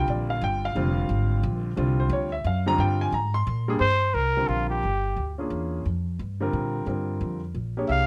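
A swung three-beat pulse drives this short, cool and intense modal jazz fragment cut from a longer piece. A woody, thumpy pizzicato upright bass on gut strings and an intimate concert grand, with audible action noise, deep low end and long sustain, voice a C9sus4 from the start. At 3.8 s a mellow trumpet enters as the soloist, scooping into notes with light vibrato in plate reverb, then returns briefly at 7.9 s; all three parts sit up front in a light reverb.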